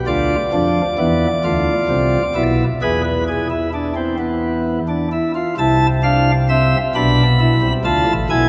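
Sparkling flute stops on a solo pipe organ open this joyful, elegant excerpt from a longer baroque-style three-part fugue, set in 6/8 at 44 BPM in dotted quarters and tuned to A4 = 438 Hz; its bright, up-front voicing spans A1 to B5 and moves from Bdim/D through E to Am/C and Bm7b5 as it passes from its opening section into a second at 5.6 seconds, bathed in a wet cathedral reverb that hangs for 4.2 seconds.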